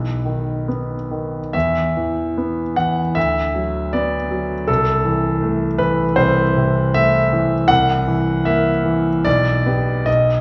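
Brooding and stormy, this short fragment of a romantic character piece for solo piano moves in a flexible, rubato 4/4 at roughly 68-82 BPM. The grand piano is the only voice, spanning B1 to F#5, and its tone is clear and natural, with the mechanical sound of the action audible beneath the notes. The instrument feels intimate and up front, yet it sits within the lingering 1.8-second reverb of a scoring stage that gives the impression of listening from further back in the room. The harmony shifts from B through E5, Bm/D and Am/C to a C7 at 7.7 seconds before settling on Bm at 9.2 seconds. The passage runs about 10.4 seconds and is cut from a longer work.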